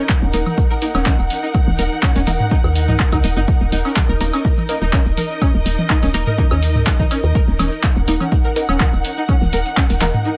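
Minimal techno at 124 BPM in Eb minor, cool and hypnotic, cut from a longer piece: a punchy, tape-warm electronic kick sits up front with analog drum-machine handclaps and hi-hat, grainy cabasa, and tape-echoed electronic toms and woodblock, while a round, woody FM bass pumps against the kick beneath a twangy, string-like resonator pluck riff with chorus and digital delay, muted dub chord stabs colored by phaser and tape echo, and a lush, distant bowed string section, all in a light reverb.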